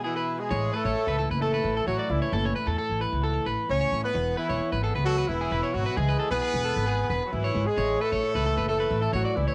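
This carefree highlife excerpt opens on a clear, punchy horn section carrying the melody in tight octave doubling with light vibrato. Beneath it, a picked electric guitar on the edge of break-up plays accompaniment through lush chorus and cassette tape, while a twangy second guitar plays fingered arpeggios in the background. At 0.5 s a woody, thumpy upright bass joins up front on gut strings, and the warm home cassette recording sits in moderate studio reverb as the harmony moves between E and A.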